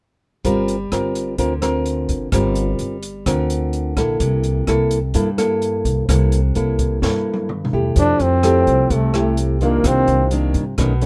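This short bossa nova clip sounds dry and close, with little reverb around the players. A classical nylon-string guitar sits up front, thumb-plucked with audible finger squeak, moving through Gm11 and C6 over a growly, thumpy pizzicato upright bass on steel strings. An open jazz drum kit in a studio room sits further back, its high-tuned snare, rim click, hi-hat, toms and boomy kick building into a fill from 7.0 seconds. At 8.0 seconds the harmony shifts to Fmaj9 and then Cm9, and a forceful, close-miked trombone leads with a jazz solo full of scooped notes. A very quiet, natural-sounding baby grand piano enters at 8.4 seconds. The mood is sunny and romantic, and the passage is cut from a longer piece.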